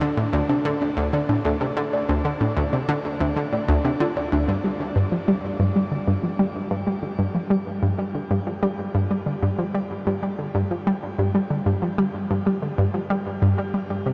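Ambient, sequencer-driven space music in D minor at 94 BPM, with a cosmic, mysterious mood, taken from a longer piece. A warbly, dusty pluck opens with arpeggios in a mid register, its lo-fi, mellow tone colored by chorus and delay, and it stops at 4.5 s. Underneath, an analog pluck carries a low riff throughout, round and detuned, with a noisy edge and a bright, up-front presence that sits louder than the arpeggios, also treated with chorus and delay. After the arpeggios drop away, the riff carries on alone until 14.1 s. A long shimmering reverb washes over the dark production, giving the sparse sequenced lines a vast, drifting sense of space.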